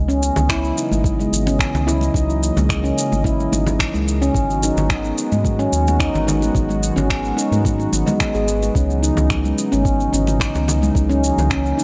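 Warm and earthy, this organic downtempo excerpt moves at 109 BPM in a straight 4/4, sitting in C# dorian with chords that shift from C#m11 to G#m7 at 4.4 seconds and back to C#m11 at 8.8 seconds. Up front, a meditative stainless-steel handpan rings out arpeggios with sharp finger strokes, its tone shaped by a low-pass filter and a digital delay. Beneath it, a smooth sawtooth analog pad holds sustained chords with a soft attack, long release and chorus, gently pumping from sidechain compression, while a round, deep analog bass blending sawtooth and sine adds a dark, fast-attack foundation that pumps as well. The rhythm comes from a soft, overdriven electronic kick drum entering at 0.5 seconds and a gritty electronic shaker with finger snaps, also overdriven. Close, dry congas played with hard hands sit in the background, and a light reverb ties the parts together in a relaxed, grounded space.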